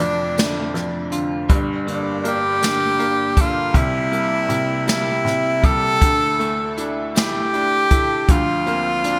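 A tender, swaying pop ballad in 6/8 opens at once with all four parts together: a clear tenor saxophone carries the melody up front, colored by delay and a light vibrato, with a punchy, pop-style solo voice. Beneath it, a bright upright piano plays the accompaniment close and intimate, its woody tone ringing with long sustain and audible action noise. A clean electric guitar, recorded direct and compressed, picks arpeggios in the background through a lush chorus. A jazz brush drum kit sits up front with hi-hat, a medium-tuned snare and a boomy kick, all wrapped in gated reverb. At a slow 53 BPM in F major, the harmony moves through F6, Gmadd9, C7 and Dsus2 before reaching Bbadd9/D at 8.3 seconds. A moderate hall reverb and small room ambience frame this 9.2-second excerpt, cut from a longer piece, in a bright 1980s-style digital production.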